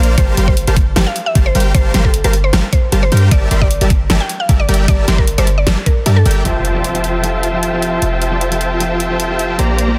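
Under a dense, heavily limited master with light reverb, this playful, lush future bass excerpt at 153 BPM in half-time with a slight swing opens in F major on a drop where a huge, detuned supersaw riff, a woody, round mallet-like pluck melody and a boomy 808-style bass pump against an overdriven dubstep kit with a huge snare and bright hats plus a knocking up-front kick, before a slightly broken-up electric guitar slips in the background at 6.4 seconds, followed by an impact at 6.5 seconds and an airy, breathy pad that settles on Fmaj9.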